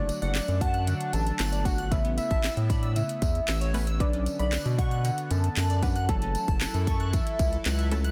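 This carefree, summery dance-pop cut moves at 115 BPM in a straight 4/4, sitting in D major and cycling through D/F#, Aadd9, Bmadd9 and F#m7. A velvety synth lead carries the melody between D5 and A5, colored by chorus and tremolo, while punchy sawtooth chord stabs with a filter pluck fill in the harmony. Beneath them, a shimmering pulse-width pad holds sustained chords in the background, and a glassy, crystalline wavetable pluck spins arpeggios through a digital delay. A round, deep analog bass sits up front, and it pumps with sidechain compression along with the stabs, pad and pluck. From 0.1 s, an electronic house kit with a cracking snare, metallic hats and handclaps drives the groove, joined by a jingly tambourine set distant in a large room. The mix is dry and the master is dense and heavily limited, in a short section cut from a longer piece.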